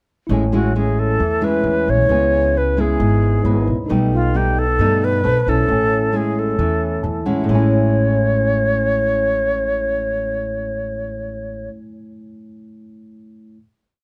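An airy, reedy alto flute carries this short, romantic and breezy bossa nova up front, singing motif-based song phrases with gentle vibrato and a soft attack, set in plate reverb. Beneath it, a fingerpicked nylon-string guitar with fresh strings plays thumb bass and syncopated plucked chords, a woody pizzicato upright bass plays dotted root-and-fifth lines, and a clean tine electric piano holds drop-2 chords. The electric piano adds a fill at 6.8 seconds before the group settles onto a final chord at 7.5 seconds, and the piano rings on alone until 13.6 seconds in a light room.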